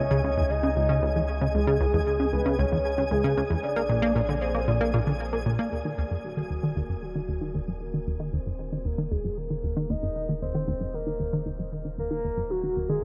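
Ambient, sequencer-driven space music at 115 BPM in a straight 4/4, hypnotic and cosmic, where a punchy, funky analog bass riff with a plucky filter snap and tape echo drives beneath a soft, octave-layered synth lead carrying a dark, round melody through chorus, tremolo and tape echo, a deep sine sub bass anchors the low end, a twinkling granular shimmer sparkles until 5.7 s as the harmony moves from C#madd9 and A#7 into Eb dorian, and a filter sweep then moves across the analog bass while a huge ambient reverb hangs over this excerpt cut from a longer piece.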